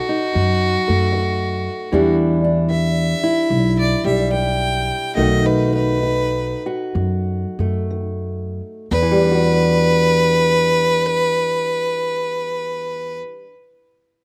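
Smoky and brooding, this slow acoustic country blues in E minor swings gently at 58-76 BPM and slows down between 1.9 and 8.9 seconds as the chords move from a rootless B7 through Em7 and B7 to a closing Em9. A clear, focused fiddle carries the bowed melody up front with light vibrato, while a fingerpicked ladder-braced acoustic guitar with old strings gives a boxy, woody accompaniment and a pizzicato upright bass with steel strings adds a dark low end from 0.4 seconds. Recorded outdoors with little reverb, the sound is dry and close, and this excerpt is cut from a longer piece.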